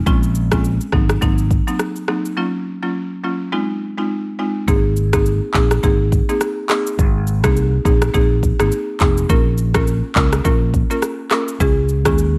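A buzzing marimba struck with hard mallets provides the accompaniment in this sultry, mellow afrobeats clip, its hardwood bars sounding woody, dry and percussive in a boxy small room, placed up front. The groove moves at 104 BPM in 4/4 with a swung sixteenth-note feel, tuned to A4 = 436 Hz. Beneath it, a fingered electric bass sounds amped, punchy and warm. An electronic, produced afro-pop drum kit adds a deep kick, handclaps, rim click and shaker. The harmony moves through Bbm7, Ab7, Gbmaj7 and Fm7, with a break from 2.4 to 4.7 seconds, then settles on Abadd9 and later Bbm before arriving on Db at 11.6 seconds. A digital ambience frames the sound, and the passage is cut from a longer piece.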